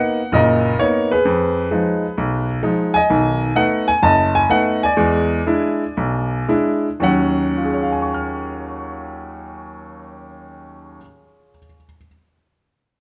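Solo jazz piano in a smoky, cool mood, this short passage is cut from a longer piece and swings its eighth notes over a four-beat metre. A clear baby grand carries the whole performance alone from 0.0 to 12.1 seconds, sitting up front with an intimate, natural tone, long sustain and the audible noise of its action. Its playing spans from the deep low register up into the high treble, moving through rich seventh chords. Between 3.1 and 7.0 seconds the pace slows down as the harmony shifts through dominant sevenths, before the music settles into a new section at 7.0 seconds. A moderate large-studio reverb lends the sound a gentle sense of space around the close, detailed piano.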